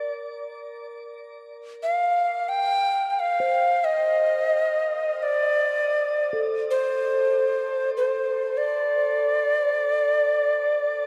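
In free time, this haunting, meditative world piece, cut from a longer work, places a breathy, close-miked Native American-style cedar flute up front carrying the melody with vibrato and a crisp, chiffy attack, while a softer bronze singing bowl struck with a felt mallet rings beneath with metallic, slowly beating tones, both bathed in shimmer reverb for the full 11.1 seconds inside a dark, cathedral-like space.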